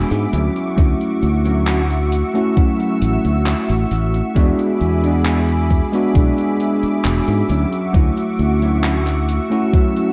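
A thumpy, overdriven electronic kick and a gated 80s drum machine of handclaps and hi-hat set a slow, straight groove in this faded, nostalgic vaporwave fragment, where a growly, up-front fingered electric bass and a bell-like tine electric piano with subtle chorus and analog delay sit beneath a lush, detuned unison pad, while a mellow, dark electric guitar riff with 12-bit sampler grit hovers in the background over Dmaj9 and E7 chords, all within a dark, warm production.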